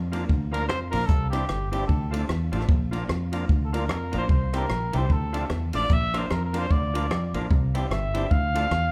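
Ska at 150 BPM in 4/4 with a swung eighth-note feel, this cheerful, upbeat 8.9-second excerpt cycles through Bb, Cadd9 and Dm while a band plays live together in a large studio with moderate reverb. A warm, vintage trumpet carries the melody as a featured solo, entering at 0.5 seconds with a punchy, up-front tone and light vibrato between G4 and F5. Underneath, a round, foam-muted fingered bass sits dark and direct, while a compact cocktail drum kit keeps hi-hat, kick, ride and rim clicks dry and tight with dark cymbals. A guitar through a small old amp adds slightly broken-up, compressed, lo-fi accompaniment with tape echo, and a very quiet, clean electric guitar picks a low riff. Further back, an overdriven tonewheel organ punctuates with gritty, percussive stabs, its key click and vibrato giving a thick edge.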